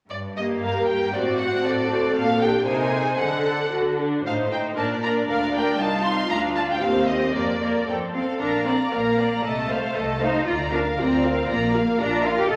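Stormy and urgent, this quick classical-period movement for string orchestra moves at 117 BPM in 2/4 with a rubato feel, turning from G minor to Bb major at 4.3 s. The violin section carries the melody high in its range, its tone smooth and even with vibrato, while a second violin line adds expressive portamento. A rich, up-front viola section fills out the accompaniment, and a lush, focused cello section anchors the bass from the start. At 8.4 s the passage moves into a new section as the double bass section joins beneath the cellos, deepening the low end on a Bb chord. The recital hall reverb lends a wet glow, and a layer of vinyl crackle sits over the sound in this brief cut from a longer piece.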